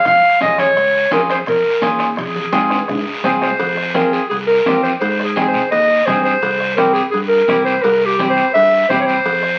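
A driving, fiery cumbia groove in straight 4/4 rides on a raspy, saturated guiro, soft low-tuned congas and ringing metal-shell timbales with cowbell set back in a live room, a very quiet bombo and a round fingered electric bass, with a drum fill from 2.7 to 3.6 s leading into the second section. Up front, a clear, smooth-topped clarinet carries the solo melody in a classical style, while a bright, twangy clean electric guitar picks its accompaniment over chords of Db, Fm, Ab and C7. Cut from a longer piece, the recording sounds like a very old 78 rpm record with vinyl crackle, bathed in wet studio reverb.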